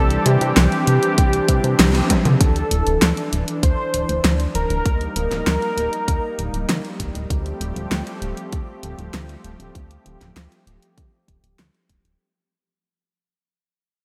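A thick, detuned sawtooth unison lead with lush chorus and delay sings a nocturnal, nostalgic synthwave melody over a smooth, soft-attack analog pad and a glossy, pulse-wave synth bass that both pump with the sidechain, as an up-front pop drum kit with a fat snare, hi-hat and toms joins almost at once and a punchy electronic kick arrives at 1.2 seconds; after a band accent and a drum fill, the piece begins fading at 2.4 seconds, the lead drops out at 7.2 seconds, and everything sits in a lush hall reverb with a bright 1980s-style digital sheen.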